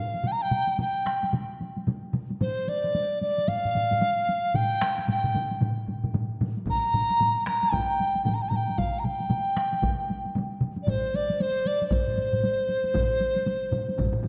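Ceremonial and powerful, this fragment of Japanese traditional music sets a taiko drum ensemble beneath a single wind melody, in 4/4 with a swung sixteenth-note feel that gathers speed over its 14 seconds. A bamboo dizi carries the tune from the first moment, its hollow, buzzing-membrane tone sitting up front with a pure, mellow quality, tongued notes and a touch of vibrato. Two taiko groups struck with heavy sticks start almost together beneath it, one heard close and another in a lively room. A third drum group in a small room joins at 2.4 seconds, and a fourth, also in a live room, enters at 6.7 seconds, thickening the acoustic pulse as the pace quickens. A wet concert-hall reverb with a long tail lends the performance a grand, resonant space.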